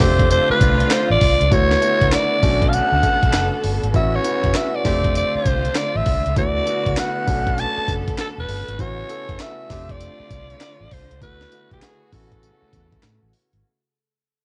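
Through a lightly reverberant, home-recorded cassette sound, this upbeat, flirty new jack swing excerpt at 99 BPM in A major swings along as a breathy, raspy alto saxophone carries the melody up front with scooped notes over a polished grand piano, a lush, bowed string section holding sustained chords with vibrato, a dark, round, foam-muted fingered electric bass, and a gritty sampler-style breakbeat kit of thumpy kick, high-tuned snare, hi-hat, handclaps and tambourine, all fading out over the full 13.6 seconds.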